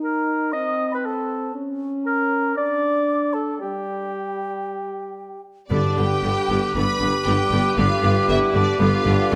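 Spirited and cheerful, this classical orchestral excerpt opens with a mellow clarinet and a pure, hollow flute carrying second lines over warm sustained French horn chords; at 5.7 seconds the orchestra arrives on a G chord as lush violins take the melody, supported by a rich second violin section, a distant oboe, very quiet violas and trombones, focused cellos, clear double basses and a soft-edged tuba on the bass, and background timpani that stop at 6.5 seconds, the ensemble heard in a moderate scoring-stage reverb.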